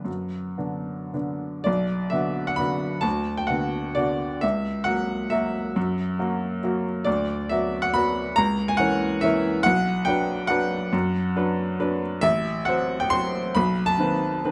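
A bright, woody upright piano plays alone through this brief excerpt of a nostalgic, elegant classical waltz in a rubato three, its close, detailed sound up front in light reverb with the instrument's action noise clearly audible as the harmony moves through diminished chords before closing on a B7b9 chord at 13.6 seconds.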